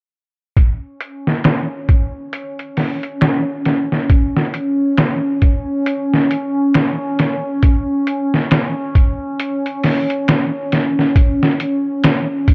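Dark and hypnotic, this trip hop excerpt at 68 BPM with a swung 16th-note feel sets a gritty, pitched-down sampler-style drum kit with a thumpy kick, medium-tuned snare and low-pass-filtered hi-hats alongside a warbling, nostalgic, lo-fi pad of detuned sawtooth and triangle tones that holds slow-attack chords through chorus, phaser and built-in reverb, both parts running from 0.6 to 12.5 seconds in light reverb.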